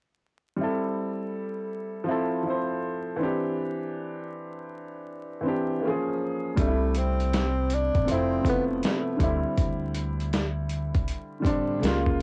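Vinyl crackle and the texture of a home cassette recording surround this cosy, mellow lo-fi hip hop piece at 80 BPM, set in a small booth with a short, moderate ambience and cut from a longer track. A woody, polished upright piano opens alone at 0.6 seconds with long-sustained chords moving through C6, Fmaj7, D9sus4 and Db6. At 6.6 seconds a gritty, overdriven sampler-style kit with a thumpy kick enters up front alongside a dark pizzicato upright bass on gut strings, while a breathy tenor saxophone adds a brief jazz solo with subtone, vibrato and scooped notes that ends at 9.4 seconds.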